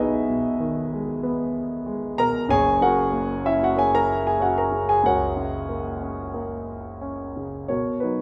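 Classical solo piano in a relaxed, lyrical mood, this brief fragment of a longer piece has a warm concert grand, placed up front with deep bass, moving in gentle rubato through Emaj7, F# and Bmaj7 chords while a moderate recital hall reverb lends the sound a natural glow.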